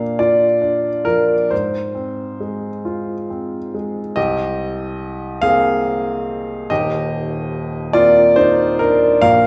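Bathed in a wet recital-hall reverb, this short cut from a longer neoclassical minimalist piece features a solo upright piano, clear, woody and up front with audible action noise and long sustain, drifting in a rubato 6/8 through Bb, Fm/Ab, Cm7 and Eb6 in a wistful, reflective mood, with a new section arriving at 4.2 seconds.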